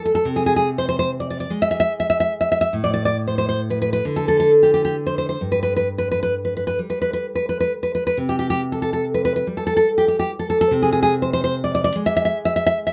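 A tender romantic solo classical guitar piece in a rubato 6/8, where a full-bodied, fingerpicked nylon-string guitar sits up front in close, detailed sound with light reverb and audible finger squeak, its augmented harmony near the start returning around 10.7 s before this short excerpt is cut off.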